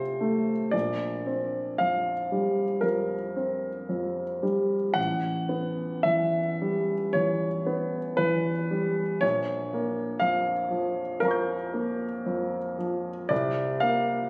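Rubato phrasing stretches the slow 4/4 pulse, giving this brief classical excerpt a hazy, serene drift in an impressionist style. A solo concert grand piano carries the whole passage from 0.0 to 14.3 seconds, spanning from A1 up to G6. Its tone is warm and intimate, with a natural character, deep bass, a short sustain and audible action noise, and it sits up front in the sound. Harmonies move through colored chords such as F69, Bb69 and A9 before a darker Bbm6, reaching a C7sus4 near 13.3 seconds as the cut arrives. The piano is tuned slightly high, to A4 = 444 Hz. It was captured on a phone in a concert hall, with a moderate hall reverb of about 2.3 seconds and added studio reverb around it.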